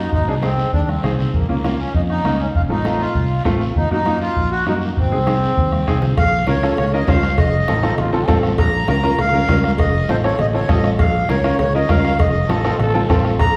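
Cumbia with a fiery, passionate mood, taken from a longer piece and driven by a reedy, up-front accordion melody with a slow beating shimmer. A growly, bright fingered electric bass sits underneath, while a woody, polished upright piano adds short-sustained accompaniment over a progression that settles into alternating B-flat minor and F7. A soft-beater bombo, ringing medium-tuned congas played with soft hands, and a raspy, distant guiro fill out the background percussion, with drum fills arriving at 0.9 and 5.7 seconds. At 6.2 seconds the second section begins and a vintage, band-limited cowbell and timbales join with a metallic ring. A gritty, growling trombone slips in briefly at 7.7 and again at 12.5 seconds with scooped notes and vibrato, all set in the generous reverb of a church or concert hall.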